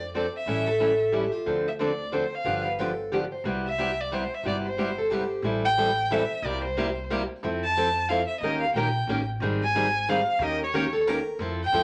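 A short, wet studio reverb surrounds this lively, playful piece of acoustic jazz manouche string swing, cut from a longer piece and moving at 181 BPM in a swung 3/4 in C major. Up front, a rich, expressive bowed violin carries the melody with vibrato, portamento and a soft attack. A picked concert steel-string guitar with audible finger squeak plays the accompaniment, and a woody, thumpy pizzicato upright bass on gut strings holds the low end. A parlour-toned, plugged-in steel-string guitar adds a second line from 0.7 to 5.4 seconds and returns briefly at 10.9 seconds. The harmony cycles through A7, Dm7, G7 and Cmaj7, then the second section turns to Am7, C7 and Fmaj7 before moving on to Eb7 and Abmaj7.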